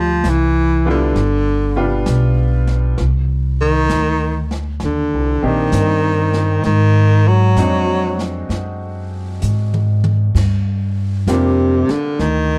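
Tender and intimate, this short jazz ballad excerpt moves at a slow 66 BPM in 4/4 with a swung eighth-note feel. A baritone saxophone carries the melody up front, its low, breathy subtone colored by vibrato. Beside it, a pizzicato upright bass sits close with a woody tone, while a brushed drum kit enters at 0.2 seconds with dark cymbals and a boomy kick, lying lower in the mix. A brilliant upright piano joins at 0.9 seconds as accompaniment, its polished, ringing notes sustaining against the darker band, and the drums play a fill from 9.4 to 10.3 seconds. The harmony drifts through rich minor-ninth and dominant colors, from Dm9 and G7 to Cm9, Ab7#11 and finally Gm7, all set in a light reverb with a dusky production.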